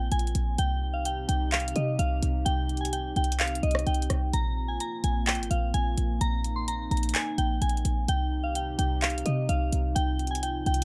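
Dry and close, this melancholic, dark half-time trap cut sets a soft, warbling FM synth bell melody with chorus and digital delay over a deep, detuned, wave-folded analog pad, while a punchy, tight sine 808-style bass with a noise layer and an electronic trap kit of handclaps, rim clicks and bright hi-hats, entering at 0.1 s, sit up front.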